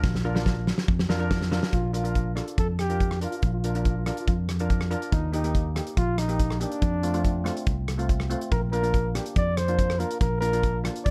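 Calypso at 142 BPM in Bb major, festive and carefree, cut from a longer piece, opens on a drum fill from an up-front acoustic kit with a fat snare and punchy kick, over a round fingered electric bass and shimmering steel pan, before a mellow, breathy flugelhorn with vibrato enters at 1.7 seconds to carry a jazz-style solo melody through a chord move from Bb to Eb, F6 and back, all in a dark, small-room production.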